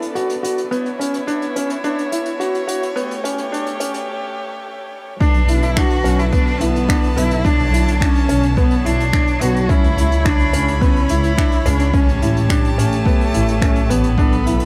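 Lightly reverberant small-room sound frames this melancholic, cinematic piano-and-strings electronica excerpt in B minor at 107 BPM, where a soft, felt-muted upright piano with audible action noise repeats a delayed, shimmering riff over a dark, woody string quartet holding sustained chords with sidechain pumping and a filter sweep. Brushed finger snaps and hi-hat sit quietly beneath the build-up, and after a short break the drop lands at 5.2 seconds. There, a punchy, overdriven electronic kick and a floating, sul tasto double bass section arrive while a distant cello sings an expressive, portamento-laden melody.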